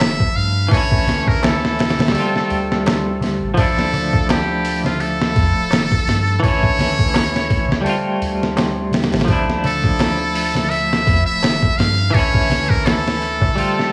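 The recording sits in light reverb, with a muted trumpet and a semi-hollow electric guitar up front over a gritty, pitched-down drum kit. This dark, cinematic trip hop cut, taken from a longer piece, moves with a gentle 16th-note swing over a cycling progression of Dmadd9, A/D and Fadd9/D. The metal-muted trumpet carries the solo melody with a brilliant, buzzy, thin tone, light vibrato and tape echo. The clean, hollow-bodied guitar picks a scooped, compressed accompaniment treated with tremolo and tape echo. Beneath them, a round sine sub bass holds deep, sustained notes, and the sampler-style kit gives a thumpy kick, a medium-tuned snare and hi-hat with a tape-warm character. A crisp, dry metal-shell darbuka played with soft hands sits in the background, and it stops with the bass at 13.5 s while the other parts continue to 13.9 s.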